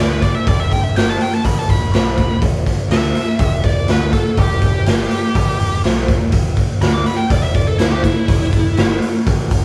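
A dark, distorted lead guitar opens this brooding, smoky blues rock excerpt at 0.0 seconds, soloing over a growling, picked bass that sits bright and overdriven in the background on an E minor chord. A raw garage drum kit joins at 0.2 seconds, up front with a punchy kick, a medium-tuned snare and hi-hat, its gritty, saturated sound carrying a rolled-off top in a stone room. The power trio plays live together in one room with light reverb, driving a straight 123 BPM groove with a southern rock edge.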